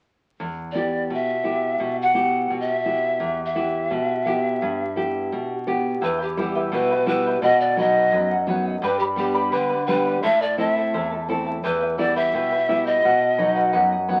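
Festive and earthy, this Andean folk passage in 2/4 is cut from a longer piece. A breathy bamboo pan flute carries the melody up front, with a crisp, chiffy attack and expressive vibrato, over a dark, full-bodied nylon-string guitar whose finger squeaks come through. At 6.0 seconds a shimmering charango with doubled strings joins the guitar, both fingerpicked, all heard through a wet studio reverb and the crackle of a very old 78 rpm record.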